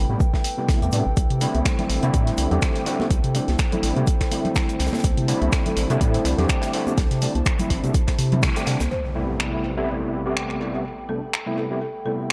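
An echo-heavy mix with light studio reverb frames this moody, smooth deep house excerpt, cut from a longer piece, with a gentle swing on the sixteenths. Up front, an overdriven tine electric piano plays gritty stabs through a combo amp, its ensemble chorus, low-pass filter and analog delay set against a dark, nasal analog pad that holds detuned sustained chords in the background, both pumping with the sidechain alongside a round, deep analog bass with tube saturation. A deep, overdriven electronic kick sits up front beside a layered deep house kit of finger snaps and hi-hat, while an airy, polished acoustic kit adds hi-hat, shaker and a high-tuned snare in the background and bright, close congas played with hard hands join at 1.5 seconds. The harmony moves from Am9 to C6 and back, and after a band accent at 8.4 seconds the bass, congas and acoustic kit drop out at 8.9 seconds. There, a woody, rustic folk marimba with medium mallets takes the melody, roughened by 12-bit sampler grit and tape echo, as an electronic impact sounds over the remaining pad, electric piano and snaps.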